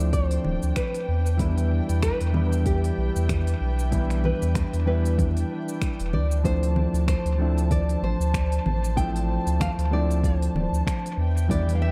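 Echo-heavy and lightly reverberant with a digital ambience, this relaxed sunset chillout excerpt sets a fingerpicked nylon-string guitar melody, its fresh strings squeaking under analog delay, over a dark, clean hollow-body jazz guitar accompaniment sent through dub echo, an intimate chamber string section bowing soft sul tasto chords, a round, up-front sine sub bass, a tape-warm drum kit of cabasa, congas, finger snaps and smooth hi-hat also fed into dub echo, and a soft electronic kick that enters at 0.1 seconds, the swung groove rocking between Dm7 and Em7.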